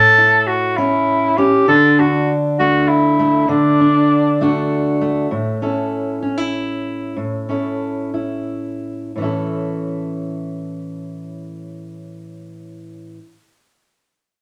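Swaying in a straight 6/8 at 57-66 BPM counted in dotted quarters, this gentle, peaceful acoustic folk piece in A major, cut from a longer work, moves from A to D and back to A. A mellow, vintage-toned tenor saxophone sits up front with vibrato and a classical-style solo melody until 5.0 seconds, while a dark, fingerpicked steel-string acoustic guitar, its finger squeaks audible, carries the accompaniment up to 13.2 seconds. The tempo slows between 5.3 and 9.1 seconds, and a wet club reverb gives the room a short, intimate glow.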